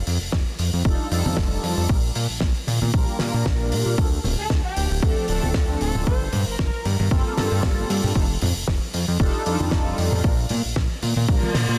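A swung 115 BPM nu-disco groove in 4/4, driven by a punchy, overdriven electronic kick, a dry 70s kit with a fat snare and background congas, carries a thick, detuned analog bass pumping under the kick and mellow, phased synth brass through F13, Bb6, Dm7 and Gm11 chords, while a dark, lush violin section adds a brief tape-echoed melody from 4.4 to 7.0 seconds before a reverse cymbal rising from 11.4 seconds and a drum fill at 11.5 seconds close this cosmic, sleek excerpt.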